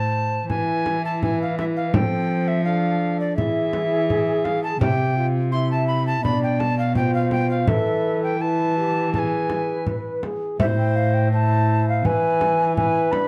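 Up-front tenor recorder, airy with a wooden chiff, carries the second line above a mellow silver concert flute's vibrato melody in this courtly, solemn renaissance-style consort dance at 83 BPM, cut from a longer piece, where a dark gut-string cello bows the bass, a clear, distant trombone and a small, bright frame drum join at 0.5 seconds, and chords such as F, Bdim and Esus4 resolve toward Am in a moderate stone room.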